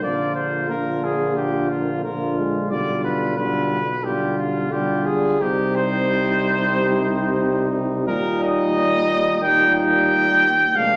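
A warm, noble classical brass quintet in C minor at 90 BPM, played with rubato, opens with all five voices together: the clear trumpet carries the melody up front with light vibrato over a distant, roomy flugelhorn second line, a mellow French horn and a vintage-toned euphonium accompany, and a punchy, present tuba with vibrato holds the bass, as the harmony moves from Bb through G7/B and Cm to Eb in a wet recital-hall reverb.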